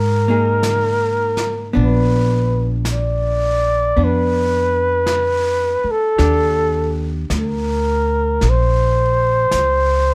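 Jazz ballad in a slow swing, intimate and tender, where a breathy, whispered flugelhorn with vibrato, a soft attack and scooped notes carries the melody up front over a dark, clean, compressed hollow-body archtop guitar and a woody pizzicato upright bass, while a smooth brushed drum kit enters at 0.6 seconds, all moving through Fm7, Bb and Ebmaj7 in a close, detailed, nearly dry recording cut from a longer piece.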